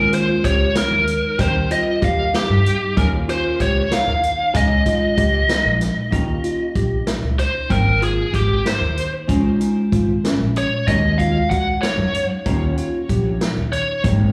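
An up-front, biting overdriven lead guitar carries the melody through plate reverb and slapback and tape echo in this driving, bright progressive instrumental in 5/8 at 190 BPM in Eb mixolydian, backed by a dark, clean hollow-body jazz guitar, tine electric piano arpeggios heard through built-in speakers, a woody, thumpy pizzicato upright bass on gut strings, and a swinging big-band drum kit with a boomy kick, all caught like a live club gig through the venue's PA, with the chords moving from Eb7sus4 to Eb9 as the second section begins at 6.1 seconds.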